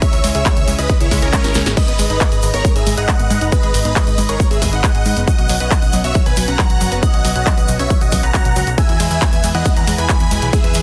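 Euphoric and soaring, this uplifting trance excerpt in G# minor drives at 137 BPM in a straight 4/4, with a huge, detuned supersaw lead carrying the melody over a lush, airy pad and a round analog pluck spinning arpeggios, all three pumping against the kick and the lead and pluck trailing dub echoes. A punchy, up-front electronic kick anchors a big-room kit of snare, handclaps, hi-hat, ride and crash, with a drum fill at 1.4 seconds, while a grainy egg shaker sits close and dry in the background. From 0.1 seconds a funky, plucky analog bass with tube saturation moves under chords running C#m, G#madd9, Bsus2 and E, all in a dense, heavily limited modern mix with little reverb.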